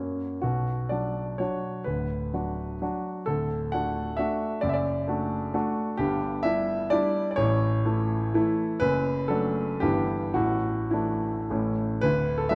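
A smooth, vintage-toned grand piano sits up front in a moderate scoring-stage reverb with a softened top end, playing alone for the full 12.6 seconds of this section cut from a longer piece. It is a graceful, rustic romantic classical dance in triple time, with dotted rhythms and rubato phrasing that give it a lilting sway. The piano spans from D1 to F#5, and its harmony shifts to a brighter major colour from 6.0 seconds before settling on a bare closing chord at 12.0 seconds.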